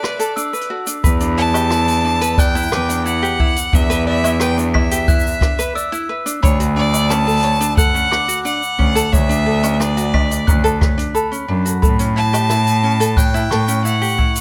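Set in a studio reverb, this delicate, autumnal folktronica excerpt at 89 BPM opens with a bowed violin singing the melody with smooth vibrato, a bright fingerpicked ukulele playing arpeggios, and a natural brushed jazz kit ticking out hi-hat, rim click, shaker and woodblock; violin and ukulele each carry a digital delay. A glockenspiel played with soft plastic mallets adds a dark, bell-like second line through tape echo, and at 1.0 seconds a nasal, boxy bowed cello takes up the bass beside an airy, boomy kick drum. The harmony moves from Bm7 through E7(no3) and Dmaj7 to A7.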